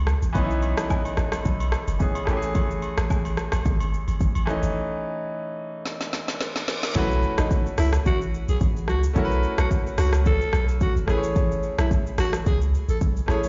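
Swung sixteenths at 109 BPM drive this sunny, breezy afrobeats excerpt in B mixolydian, where a punchy, deep sub bass with a pitch-drop attack and an up-front electronic drum kit with woody snare and crisp hats carry a bright, polished concert grand piano, agogo bells and woodblock add a live-room acoustic sparkle until 4.5 seconds, a background reverse cymbal and impact mark the break into the second section at 7.0 seconds, and a breathy, raspy alto saxophone with vibrato and digital delay takes the solo melody from 7.4 seconds, all heard as if through a big sound system in a bare stone room.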